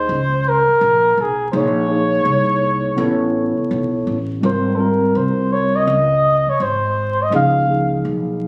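Heard through vinyl crackle, a light small-room reverb and the compressed sound of a phone in the room, this smoky, cool swung hip hop excerpt puts a breathy, smooth-topped flugelhorn up front with jazz-style vibrato and scooped notes over a clean, mellow tine electric piano heard through its built-in speakers and a woody, growly pizzicato upright bass, drifting through chords like Dbsus2, Bbm9 and Ab69.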